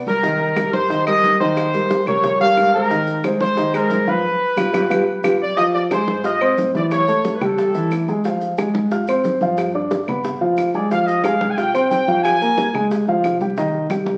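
A bright, punchy trumpet section leads this driving, fiery salsa cut from a longer piece, carrying the melody up front until 7.9 seconds and returning at 10.8 seconds. Beside it, a dark, intimate grand piano plays a smooth, vintage-sounding accompaniment throughout, its mechanical action noise faintly audible. An acoustic upright bass plucks growly, woody lines in the background, while tight, high-tuned bongos and thin-skinned congas fill out the percussion alongside dry, woody claves and grainy, compressed maracas. The band hits an accent with a drum fill just before the second section begins at 5.6 seconds, and the harmony moves through minor, dominant seventh and extended chords before settling on a C minor chord. The whole recording sits in a large, wet studio reverb and carries the crackle of a very old 78 rpm record.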